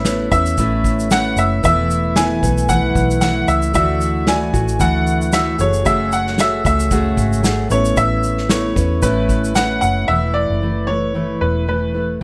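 This acoustic pop excerpt has an easy-going, heartfelt mood, moving in four with a light swing on the sixteenths. A bright upright piano carries the melody up front, its brilliant, worn tone slightly detuned and open. Beneath it, a second upright piano sits in the background, dark and intimate, with audible action noise, a boxy character and long sustain. A jumbo steel-string acoustic guitar, fingerpicked and full-bodied, plays prominently alongside a vintage electric bass that is foam-muted, amped and round. An unplugged drum kit recorded in a studio room uses bundle sticks on a medium-tuned snare with a tight kick and shaker; the drums stop at 10.0 seconds and the dark piano at 10.1 seconds, leaving the melody piano, guitar and bass over a closing Esus4 after chords that move through Aadd9, Dadd9 and F#madd9 under a light reverb.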